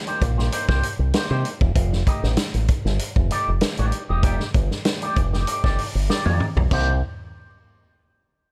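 A straight 4/4 funk groove rides a vintage drum kit with a punchy kick, a medium-tuned snare and dark, rolled-off cymbals, sitting up front in a natural studio room. A round, dark fingered bass through an envelope filter sits equally forward, while a bright, twangy clean guitar, also filtered and touched with subtle chorus, picks out accompaniment over Cm7 moving to a long F13. It feels cool and funky, with a drum fill at 6.1 seconds before this short excerpt cuts off back on Cm7.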